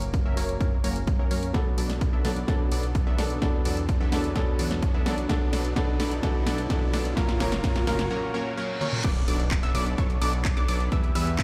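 A punchy, up-front electronic kick drives this emotional, euphoric slice of festival progressive house at 128 BPM in B minor, cut from a longer piece. Through the build-up, a detuned supersaw stab riff rides a filter sweep with sidechain pumping and delay, while a baby grand piano with audible action noise and short sustain plays accompaniment until 9.1 seconds over a fat, saturated analog bass sitting in the background. A layered, tape-warm house kit adds a punchy snare, warm hats, claps, toms and crash, with a drum fill and then a brief break in which a reverse cymbal leads into the drop at 9.0 seconds. There a lush, bright unison pluck enters with high arpeggios, and a very quiet impact, following a faint riser through the build-up, sits beneath the mix. The harmony moves from F# to Bm7 and closes toward Em, all set in a large, reverberant room as if played on a big sound system.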